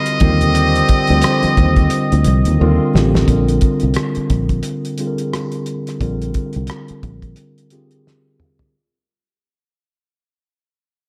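Swung sixteenths in 4/4 carry this smooth, warm neo-soul and R&B excerpt, where a cloth-damped, thuddy drum kit with fat snare and tight kick sits up front beside a round, dark fingered bass and a mellow tine electric piano, with very quiet, bright congas in the opening seconds. A buzzy metal-muted trumpet with light vibrato plays a brief jazz-style line over tight stabs from a horn section, both trailed by diffuse ambient delay, before the harmony moves from Ebmaj13 to Bb9 at 3.3 s and the music begins fading out. The dreamy mix is soaked in plate reverb, with drum fills at 2.6 s and 8.1 s.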